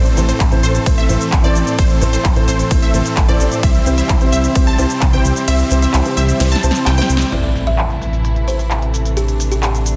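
The excerpt opens mid-drop in anthemic, euphoric festival progressive house, with dark, very quiet bowed strings, a lush unison pluck arpeggio and huge detuned supersaw chords in the background, both pumping and tape-echoed, over a thick, menacing detuned saw bass, a dark vintage grand piano and an overdriven big-room kit with a punchy up-front kick that drops out at 5.5 seconds before a drum fill, until at 7.3 seconds an electronic impact lands and a buzzing, woody kalimba takes the melody.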